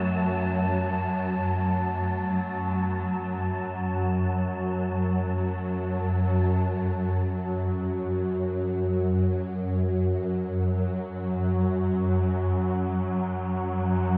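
In free time, this fragment of a longer dark ambient drone piece feels cavernous and ominous, its dreamy mix soaked in a moderate plate reverb. Up front sits a swarming drone, tense and evolving, built from detuned, wave-folded tones with a granular grain, slow attack and long release, sustaining until it stops at 14.2 seconds. Behind it, a wind-like, breathy noise texture hovers on a single high pitch, dark and airy, and ends at 6.5 seconds as the music moves into a second section. Very quiet carillon bells play soft arpeggios with a bronze, padded-clapper ring and a minor-third overtone, lasting until 12.3 seconds. The whole passage rests on one minor chord, letting the drone's restless motion carry the tension.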